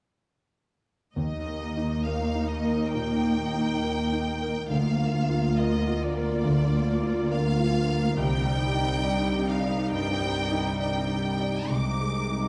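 Tender and hopeful, this cinematic, emotional film score for orchestra moves at a rubato 69 BPM in Eb major, with every part entering together at 1.2 seconds over a progression from Eb through Bb/D and Cmadd9 to Ab/C. A rich, focused violin section carries the melody with vibrato, while a clear concert grand piano with deep bass and long sustain accompanies alongside a lush viola section, a very quiet, mellow concert harp plays ringing thumb-plucked arpeggios, and a smooth-topped cello section holds the bass. A wet recital hall reverb surrounds the ensemble in this passage cut from a longer piece.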